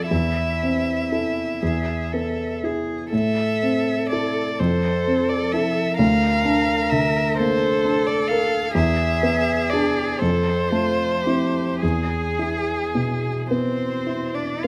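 The recording sits in a recital hall with a moderate reverb tail, captured by close, detailed microphones that bring out small sounds such as the action noise of the piano. This is a slow romantic movement for piano trio in 6/8, played with rubato, its mood melancholic and elegiac, and this 14.7-second passage is cut from a longer piece. A rich violin carries the melody up front, its bowed tone smooth and even with vibrato, while a clear, focused cello sings a second line beneath it, also with vibrato. A dark baby grand piano accompanies throughout, mellow and intimate, with a natural tone and short sustain, reaching down into its low register. The harmony moves through Am/E, E and Am to Fmaj7, then Bb/D, before E7 and a return through Fmaj7 to E.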